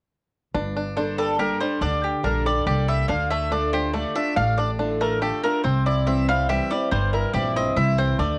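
Driving yet lonesome, this short bluegrass excerpt in a straight 3/4 pairs a twangy, fingerpicked banjo melody with a bright, double-strung mandolin that joins at 1.0 seconds, over a picked steel-string guitar with audible finger squeak and a thumpy, dark pizzicato upright bass on gut strings, moving from Gmadd9 through Dm to C in a small, reverberant room with the cassette grain of a home recording.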